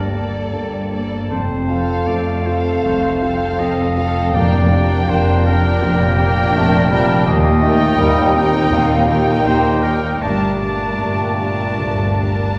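Heard from further back in a wet scoring-stage space, this hopeful, moving cinematic film-score excerpt unfolds at 81 BPM in 4/4 with a loose, rubato pulse, as a dark violin section carries the expressive melody with vibrato and portamento over chords moving from Gmadd9 through F, Bb6/F and Eb. Airy flutes, a bright solo oboe, a lush second violin section and a soft-attacked clarinet weave second lines, while a very quiet viola section and a deep-toned grand piano fill the accompaniment and a mellow, distant French horn section holds sustained chords. Smooth cellos and a focused double bass section anchor the low end, with timpani sounding in the background from 4.3 to 5.4 s.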